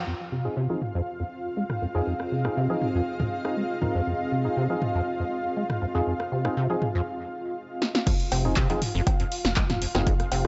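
Trippy and raw, this acid house passage in F minor moves at 120 BPM, with a rubbery, resonant square-wave acid bass riff and a lush, detuned unison pad holding Fm7 chords, both pumping against the sidechain, while a hollow, organ-like stab carries a filter sweep and a cloudy, evolving granular pad drifts through the middle. A punchy analog drum machine sits up front with overdrive, filtered hats and cymbals, handclaps, rim click, cowbell and toms, and it fills at 7.8 seconds, inside a break that opens at 7.1 seconds. The drop at 8.1 seconds brings in an overdriven electronic kick and a round, sustained sub bass with tube saturation, all inside light digital ambience and a dark, rolled-off top end.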